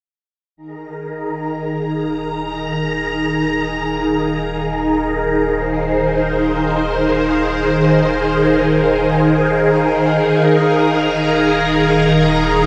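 A swirling, vintage phased string machine holds bright, up-front sustained chords over an Ebsus4 harmony in this hypnotic, expansive excerpt of ambient, sequencer-driven space music in free time, entering at 0.6 seconds together with a deep, round sub bass fading in on a low Eb, and joined from 1.5 seconds by a pulsing, tempo-synced gated texture with chorus and shimmer reverb sitting in the background, all bathed in a vast cathedral reverb.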